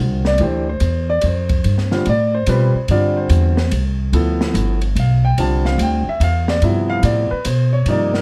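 A woody, thumpy upright bass sits up front in this short fragment of modal jazz, its pizzicato steel strings carrying the low end from the first moment. A clear concert grand piano with deep bass and a natural tone shares the foreground as accompaniment, voicing a D13sus4 that shifts to G13sus4 at 2.9 seconds. An acoustic jazz drum kit joins at 0.2 seconds, recorded in a studio room, with dark cymbals on ride and hi-hat, a high-tuned snare and a boomy kick, all sitting further back. The tempo is 145 BPM in a swung 3/4, giving the piece a lilting waltz pulse, and the mood is spiritual and searching. Light reverb and a dark, warm production round off the sound, with the tuning set to A4 = 444 Hz.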